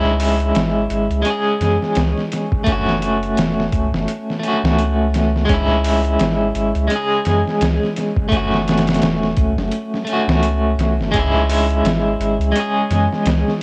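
This short cut from a longer piece sounds like a home recording on cassette: dry and close, with little reverb. It is a hypnotic, smoky trip hop groove in C# minor at 85 BPM in 4/4, with a lazy swing on the sixteenths, alternating between C#m and F#m. Up front, a picked electric guitar sits at the edge of break-up, slightly broken-up and warm, with tremolo, tape echo and the grit of a vintage 12-bit sampler. Beneath it, a soft dub sub bass holds down the low end from the first moment, deep, round and mellow, with a fast attack and sustained notes. The sampler-style drum kit arrives at 0.2 seconds, compressed, pitched down, gritty and coloured by cassette tape, with a thumpy kick, a medium-tuned snare and hi-hat.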